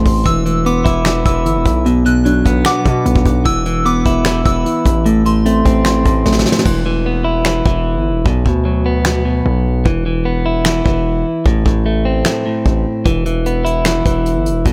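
A soft, pure FM synth bell with chorus and phaser, muted, dark felt-like synth keys playing arpeggios, a clean, picked electric guitar and a saturated, distorted 808-style bass open this eerie, hard-hitting half-time trap cut at 150 BPM, with a brushed acoustic kit entering at 0.1 seconds with a fat snare, punchy kick, hi-hat, finger snaps and crash. The chords cycle through E5, Bm and Am, and the bell and keys drop out as a drum fill starting at 6.3 seconds closes the first section. A break running to 13.1 seconds leaves the up-front guitar, the heavy, aggressive bass and the drums in a small room ambience.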